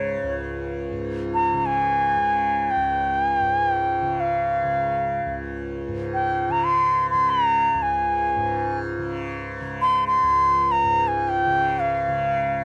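Hindustani classical music in free time, serene and meditative, in raga Yaman on Db with tuning near A4 = 437 Hz: an airy, reedy bamboo bansuri with a straight, tongued tone sits close and up front, carrying the melody between Db5 and C6 for the full 12.6 seconds over a softly plucked, buzzing, shimmering tanpura drone from Db2 to Db3, all in a dry, close 1970s-style studio sound cut from a longer piece.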